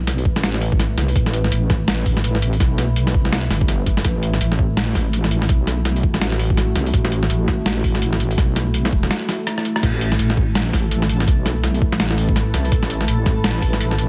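A deep, wobbling sawtooth bass with chorus and tube saturation sits up front in this dark, tense half-time drum and bass excerpt, over a thumpy, overdriven electronic kick and a gritty, compressed sampler-style kit of crash, hi-hat, rim click and a medium-tuned snare that sounds re-recorded in a small room. Behind them, a moody detuned ambient pad holds sustained chords with chorus, lo-fi 12-bit sampler grit and sidechain pumping. After a brief break with a drum fill around 9.5 seconds, a reversed, dreamy granular texture swells in from 10.8 seconds, all under a light reverb.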